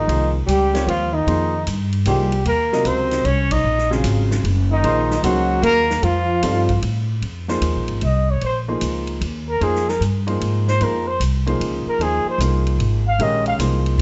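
A dark, breathy trumpet with scooped notes and vibrato leads this intense, cool modal jazz piece at 151 BPM, swung in 3/4 and centered on F phrygian, with a subtone alto saxophone carrying a second line beneath it until 6.8 seconds and the band hitting an accent early on. At 7.2 seconds the music shifts to B flat dorian and the trumpet takes a solo until 13.6 seconds, backed by a vintage-sounding grand piano, a woody pizzicato upright bass and a big-room drum kit with a punchy kick. The sound carries light reverb and a dark, rounded top end, in a short cut from a longer piece.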